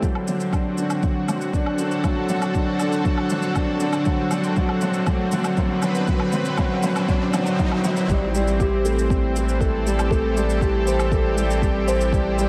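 Hypnotic and melancholic, this piano and strings electronica fragment at 119 BPM sets a soft, felt-muted upright piano riff, up front with delay and shimmer reverb, over a thick, detuned unison pad with chorus and sidechain pumping, a round, sine-like analog bass that also pumps, a deep tape-warm electronic kick and a layered shaker and woodblock, while a very quiet riser from 4.9 s builds toward the drop at 8.1 s, where the D7 harmony gives way to Am7 inside a moderate scoring-stage ambience.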